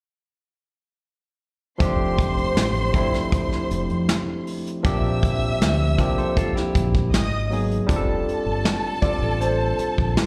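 Lush 1970s-style soul at 79 BPM in F major with a smooth mood: from 1.8 s a punchy, round fingered electric bass, an up-front vintage brush drum kit with a rolled-off top, and a barky, lightly overdriven tine electric piano with slapback echo play beneath a dark, woody, distant string section, while a twangy clean electric guitar riff appears at 6.2 s and a concert grand piano with deep bass carries the melody from 9.0 s, the band heard through a venue's PA in club reverb.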